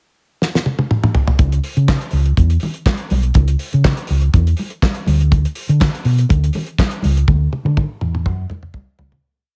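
A dark, round hollow-body electric bass sits up front, playing a syncopated disco line between B1 and D3 from 1.4 seconds in this glamorous, danceable disco piece at 122 BPM in C# phrygian. The damped 70s drum kit opens with a fill at 0.4 seconds, then settles into a four-on-the-floor disco beat with open hi-hats on the off-beats, a tight kick, and a fat snare layered with handclaps, with toms also in the kit. The drums are mid-forward, with gated reverb. Congas with a thick, soft-handed skin tone sit in the background, compressed and saturated, with a slap on two and open tones on four. A small room ambience surrounds the short pickup bar and verse, and a final drum fill arrives as the track fades out from 7.3 seconds.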